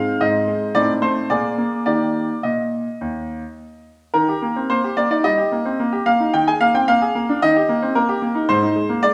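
A bright, brilliant grand piano with a vintage character sits up front, playing alone through this elegant, cheerful classical-period sonatina fragment in Eb major, tuned to A4 = 443 Hz. The tempo moves with rubato around 104-114 BPM in 4/4, with the harmony passing from Ab through Adim and Bb7 to Eb, and a second section beginning at 4.1 s. A wet recital hall reverb with a 1.5-second decay surrounds the smooth tone, and the passage closes on Ab at 8.5 s.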